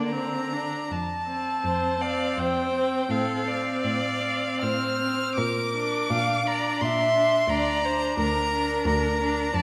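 This short passage, cut from a longer piece, sits in a wet scoring-stage reverb with a decay of about 1.8 seconds that gives the string quartet a spacious, resonant glow. It is a slow romantic classical movement in F major and 3/4, moving with rubato at roughly 70-90 BPM, and its mood is elegiac and solemn. The first violin carries the melody high up, from F5 to F6, its tone rich and focused with vibrato and placed up front, while the second violin sings a smooth, even second line beneath it. The viola fills in the accompaniment with a clear, focused sound. The cello anchors the bass with a dark, expressive voice heard close, colored by vibrato and portamento. All four players sound together from the start to about 9.6 seconds as the harmony moves from F through F/A to Bb and Bb/D.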